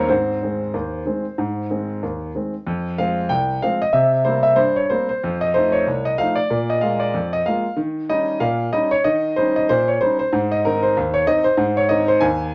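A moderate studio reverb surrounds an up-front concert grand piano with a smooth, vintage tone and deep bass, playing alone in this playful, jaunty ragtime excerpt. The tune moves at 94 BPM in 2/4 with a swung sixteenth-note feel in Ab major, ranging from C2 to Ab5. After a brief opening on Ab, a new passage begins at 2.7 s, moving through Fm, F7 and Eb7 before settling back on Ab at 10.3 s.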